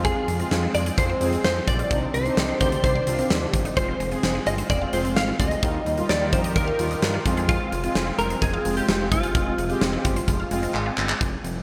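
A melancholic, nocturnal synth-pop passage cut from a longer piece, where a clean, compressed electric guitar picks the melody through ensemble chorus and digital delay over a huge arena drum kit of punchy kick, handclaps, hi-hat and snare drenched in gated reverb. Beneath it, a fat, wave-folded analog bass anchors the low end while nasal, brassy synth brass and a smooth, slow-blooming pad sit in the background, and a very quiet, squelchy blip pluck adds phased arpeggios. The bright 1980s-style production is bathed in a lush hall reverb, and a drum fill arrives at 10.7 seconds.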